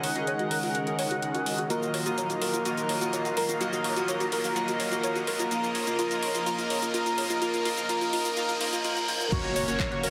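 A dense, heavily limited modern master bathed in a huge ambient reverb gives this hopeful, euphoric progressive house build-up its glossy sheen. A smooth, expressive synth lead carries the melody with chorus, vibrato and a tape-worn character, while a glossy, retro chorused polysynth sits up front with sustained stabs. Beneath them, an evolving filtered supersaw swell holds bright phased chords, and a lush, detuned unison pluck spins arpeggios in the background; sidechain pumping and filter sweeps run through all three of these synth parts as the harmony moves from C#sus2 through D#madd9 and A#m. A very quiet, thick, saturated sub bass anchors the low end, and a layered big-room dance kit supplies metallic hats, handclaps, shaker and crash, with a faint electronic riser entering at 1.2 seconds and a reverse cymbal leading into an impact. At 9.3 seconds the chord lands on F#, a deep, tape-tinged electronic kick drops in, and an intimate chamber violin section adds a soft, very quiet bowed line.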